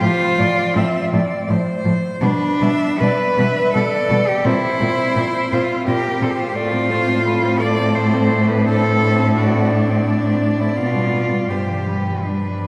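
Tender and lyrical, this classical fragment for four bowed cellos drifts in rubato 3/4 at 73-88 BPM in C major, with a rich, smooth melody cello singing high over a clear, lightly vibrato second line held up front, a warm inner accompaniment shaped by soft attacks and expressive portamento, and a focused bass cello also near the front, all wrapped in a wet church reverb with a 3.3-second decay.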